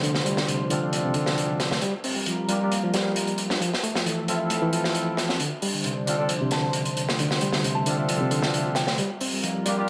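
A crunchy, gritty breakbeat drum kit sits up front under vinyl crackle and a moderate studio reverb in this energetic, funky breakbeat excerpt at 134 BPM in D minor, its saturated hi-hat and snare rolled off at the top. A reedy electric piano riff with fast tremolo and dub echo runs alongside a lush, detuned unison pad with chorus and phaser in the background, while a barely audible downlifter ends by 1.8 seconds and a distant horn section with light vibrato adds stabs from 0.7 seconds over Dm7, Gm7 and Fmaj7. At 6.5 seconds a soft, warbling FM synth bell with 12-bit sampler grit and a small-speaker tone plays a brief melody.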